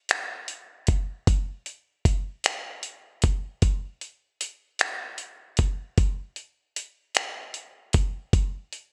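A gritty, compressed soul sampler-style drum kit sits up front from 0.1 to 8.9 seconds, its finger snaps, hi-hat and thumpy kick drum carrying a gated reverb. This late-night, sultry R&B fragment moves at 51 BPM in dotted quarters, in 6/8 with a straight feel. The sound carries a bright 1980s-style digital production and ambience, and the clip is cut from a longer piece.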